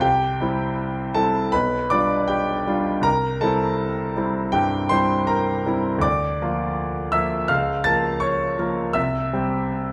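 Played with a free rubato over a 4/4 pulse, this 9.9-second passage from a longer romantic character piece for solo piano carries a warm, passionate mood. The concert grand sits up front and sounds clear and intimate, with deep bass, long sustain, a polished finish and audible action noise, spanning B1 to A6 as its harmony moves through a brief progression before returning home. A moderate large-studio reverb adds space around the instrument, though lossy compression artefacts colour the recording.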